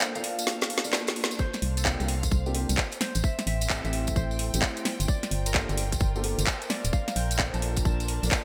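Late-night and soulful, this short excerpt of two-step UK garage at 130 BPM with a swung 16th feel opens on a break and drum fill, with a ringing, fingerpicked Celtic harp melody trailing delay, an airy, breathy pad, a dark, worn grand piano playing stabs through lush chorus, a garage kit of handclaps, metallic hats and a woody snare in gated reverb, a jingly tambourine and a bowed string section pumping in the background, before a tight electronic kick enters at 1.4 s and a hollow, organ-like FM bass at 1.6 s, moving through Bbmaj7, C9sus4, Am7 and Gm7 in a bright 1980s-style digital production with small room ambience.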